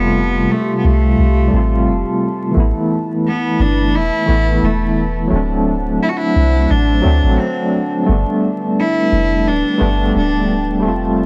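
Trip hop with a hypnotic, brooding air, this dry fragment of a longer piece rests on a soft, round 808-style bass with tube saturation and a barky, overdriven tine electric piano pushed through a combo amp with tremolo, both sitting up front. Alongside them a detuned sawtooth analog pad holds moody, slow-attack chords colored by chorus and phaser. A single bowed cello carries the melody with an earthy, biting tone roughened by 12-bit sampler grit and tape echo until it drops out at 10.6 seconds, all over a layer of vinyl crackle.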